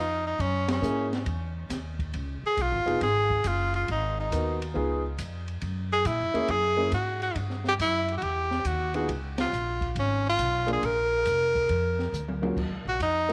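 Relaxed and swinging, this short cut from a longer small-group swing and bop piece moves at 138 BPM in Db mixolydian, with a bright, present tenor saxophone carrying the melody through tape echo. Up front beside it, a woody pizzicato upright bass on steel strings anchors the harmony from the start. An open jazz kit with dark cymbals, a high-tuned snare and a boomy kick enters at 0.4 seconds, and an intimate grand piano with audible action noise accompanies from 0.8 seconds, all inside a moderate spring reverb and studio ambience, with band accents at 0.6 and 9.3 seconds and a drum fill near the close.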